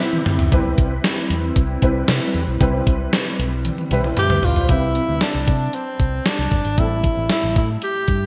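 A thumpy, up-front 80s drum machine with gated reverb on the snare drives this uplifting, glossy 1980s-style pop at 115 BPM in C major, while round, punchy muted electric bass enters at 0.5 s, a natural-sounding baby grand piano with ensemble chorus plays accompaniment and a fill, a swirling, airy phased analog pad holds background chords until 4.7 s, and a bright alto saxophone with vibrato sounds briefly at the start before returning with the solo melody at 4.2 s, all in a lush hall.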